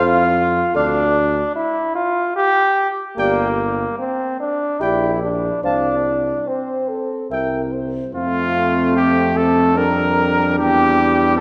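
Classical brass quintet music in a noble, stately 3/4 at 74 BPM in F major, cut from a longer piece, where a warm trumpet with light vibrato and a soft attack carries the melody up front, a mellow, distant flugelhorn with light vibrato sings a second line in the background, a brilliant, roomy trombone sits up front in the accompaniment beside a smooth-topped French horn further back, and a bright bass trombone anchors the bass, all five playing throughout in a dark production bathed in wet scoring-stage reverb as the harmony moves from F through Dm and Gm to C before a new section begins at 8.1 seconds.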